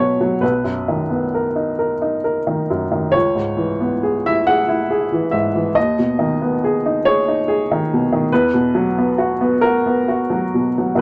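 Neoclassical minimalist piano in 6/8, played with a gently rubato feel that gives this short excerpt an intimate, peaceful mood. A single upright piano carries the whole passage, its tone clear and woody, with a natural, short sustain that lets each chord settle and fade quickly. The harmony moves slowly through Bmaj7, C#m7, G#m/D# and Esus2, with the first chord arriving at 0.4 seconds and the last at 8.3 seconds. The playing spans from deep B1 in the bass up to F#5, giving the brief phrase a full but uncluttered range. The piano sits up front in a dry, close studio sound in the 1970s manner, with little room reverb, so the instrument feels near and personal.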